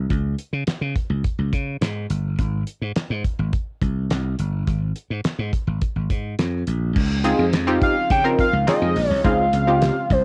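Early-eighties boogie funk with a smooth, feel-good mood, this excerpt opens on a growly, punchy slap bass and a dry, dark drum kit with fat snare, tight kick, hi-hat, handclaps and crash, all heard in a small, lightly reverberant room, until at 7.2 seconds a chorused, filter-plucked polysynth comp arrives, joined shortly by a very quiet sawtooth pad and a detuned, phaser-treated lead with vibrato over a Dbmaj9 chord.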